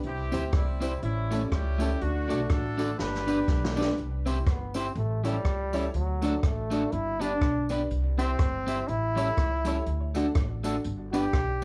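Cheerful and joyful, this swung ska excerpt moves at 122 BPM in C major, with an upfront jazz brush drum kit carrying a vintage 12-bit sampler grit, a woody, thumpy pizzicato upright bass, an electric guitar at the edge of break-up, a slightly detuned upright piano with tape echo in the background, and a jingly tambourine. A tight, punchy horn section with tape echo states the melody until 3.9 seconds, and after a drum fill a bright trombone with light vibrato takes a solo from 4.5 seconds to the end. The drums and tambourine have a small-room sound, and the whole mix sits under moderate studio reverb.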